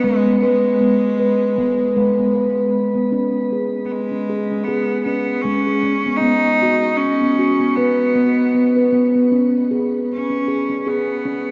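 A round, ringing steel tongue drum played with rubber mallets carries airy arpeggios up front while a single bright, bowed cello with light vibrato and an intense yet smooth top sings the melody in this gentle, meditative world excerpt at 78 BPM with a lightly swung sixteenth feel, both parts washed in shimmer reverb and tape echo inside a vast, echoing cathedral space as the harmony moves from G#m through C#5 and B.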